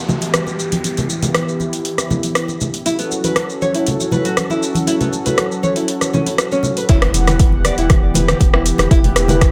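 Spiritual and warm, this afro house excerpt moves at 119 BPM in a straight 4/4 feel, centred on E dorian and shifting from Emadd9 to F#m7 and back. A smooth, detuned sawtooth pad holds sustained chords throughout, carrying chorus and sidechain pumping while a filter sweep runs across it until the drop at 6.9 seconds. An afro-pop drum kit of metallic hi-hats, rim click, shaker and toms sits up front with overdrive, joined by low-tuned, damped congas with a thick, acoustic skin tone heard in a live room. A downlifter and impact murmur in the background through the opening seconds, and a small, fingerpicked nylon-string guitar enters at 2.9 seconds with arpeggios treated with digital delay and sidechain pumping. At the drop, the downlifter and impact return as a deep, overdriven electronic kick arrives alongside a round, mellow sine sub bass on E1, both sitting beneath light reverb and a digital ambience.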